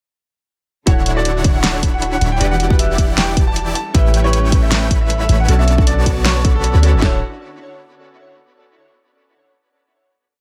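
Lush and bright, this future bass piece in D major at 156 BPM with a swung half-time feel drops in at 0.9 seconds: a brilliant baby grand piano repeats a riff melody through tape echo and sidechain pumping, glassy digital keys add rootless, syncopated chords colored by chorus, phaser and tape echo, huge detuned supersaw chords throb in tempo with a spread voicing, a very quiet dark string section holds a bowed pad with vibrato, a deep, boomy 808-style bass sits up front with long gliding notes, and two layered pop drum kits supply a punchy half-time kick, a fat snare and closed hats with rolls, all fairly dry before the music settles on a final Dmaj7 at 7.0 seconds.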